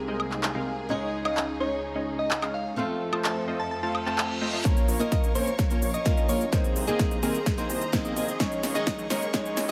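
A punchy, overdriven big-room dance kit drives this anthemic, euphoric festival progressive house excerpt at 128 BPM in a straight 4/4, its crisp hats, handclaps, shaker, snare and woodblock sitting up front from 0.2 seconds, with a layered electronic kick joining at 4.7 seconds. In Bb minor, a round, tine-like thumb-piano-style synth pluck carries the melody with chorus, gritty vintage sampler character and dub echo, over a boxy fingerpicked swing-style acoustic guitar and a lush symphonic string section holding sustained chords. A detuned supersaw stab plays a riff through a low-pass filter, pumping against the sidechain with dub echo. A very quiet reverse cymbal and riser rise from 3.9 seconds into a build-up, where a mellow unison lead with vibrato adds arpeggios through cassette tape coloring, and a fat analog bass settles in the background, while filter sweeps and a drum fill push the energy. 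The chords move through Abadd9/C, Dbsus2, F and Bbm, and light reverb ties the sound together.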